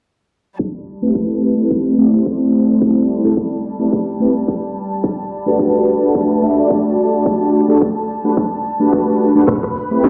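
Nu-disco at 108 BPM in A dorian, this sleek, sensual excerpt from a longer piece rides a lightly swung sixteenth-note feel over a move from Am9 to Gmaj9 and back to Am9 at 9.5 seconds. A muted string section bowed con sordino holds veiled, dark sustained chords with vibrato, pumping under sidechain, while a punchy, layered electronic kick anchors the bottom. A house drum kit sits up front with a cracking snare and crisp hats, and a mellow synth brass part, brassy and round with detuned sawtooth tone, carries the accompaniment through chorus, phaser, sidechain pumping, tape echo and a filter sweep. Near the close, a clean, direct-recorded electric guitar riff flashes by from 9.5 to 9.7 seconds with analog chorus and tape echo, as a faint, saturated cabasa slips in underneath. The whole mix is bathed in plate reverb and a large studio space, with a low-pass filter giving it the feel of a big sound system playing in a bare room.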